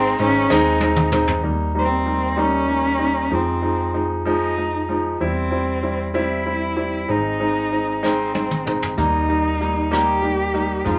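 Heard through vinyl crackle and a wet club reverb, this tender, romantic six-eight pop ballad excerpt at 64 BPM sets a nasal, expressive bowed cello melody with vibrato and portamento over clear, polished concert grand piano chords moving from Ab through Eb, Fm7 and C/E, a round, punchy FM bass, and a vintage brush drum kit with dark cymbals that plays fills from 0.5 to 1.4 seconds and again from 8.0 seconds.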